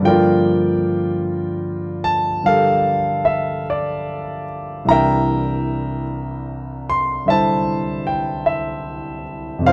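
A slow, intimate and romantic jazz ballad at 50 BPM with a gentle swing, played by a solo concert grand piano that sounds warm and natural, with deep bass and an up-front presence, spanning C2 to C6 as it moves from Gm9 to C7 at 4.9 seconds, captured by close, detailed microphones in light reverb in this short cut from a longer piece.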